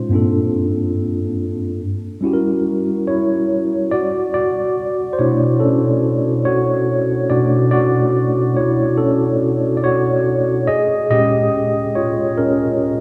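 A mellow, clean tine electric piano plays alone, up front and heard through its built-in speakers, in an introspective, soulful R&B fragment cut from a longer piece with an unhurried, swung sixteenth-note feel. It moves through Gm11 and F#7b9 before settling at 3.9 s into an extended Bm9 passage that shifts to A#m7 at 10.7 s. A wet church reverb with a long tail surrounds the instrument, giving it the spacious sound of a large hall.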